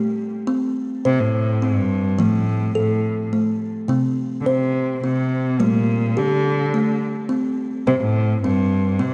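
Hypnotic and gentle, this excerpt from a longer meditative world piece in 3/4 at 106 BPM opens with woody, hollow kalimba arpeggios bathed in shimmer reverb, joined at 1.1 seconds by a single bowed cello carrying a smooth, clear melody with vibrato through shimmer reverb and tape echo, both sitting up front in a dark, wet echo-chamber sound over chords moving from C5 to F, Gm and back to C5.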